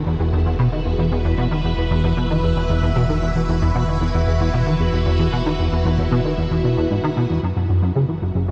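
A steady, straight 4/4 pulse at 114 BPM drives this cosmic, hypnotic piece of ambient, sequencer-driven space music, heard as a short cut from a longer work. Up front, a plucky analog bass plays a punchy, funky riff with a fast attack and decaying filter pluck, its wave-folded, ring-modulated tone thrown into echoes by delay and thickened with ensemble chorus. Behind it, a phased string machine holds sustained chords with a slow attack, its vintage, swirling sound warbling through a moving notch. Underneath, a round analog bass sustains deep, dark low notes that evolve. The harmony sits on Esus2 before moving to F#5 at 7.4 seconds for the brief closing section. A huge ambient reverb soaks the whole dreamy mix, lending it a vast, floating space.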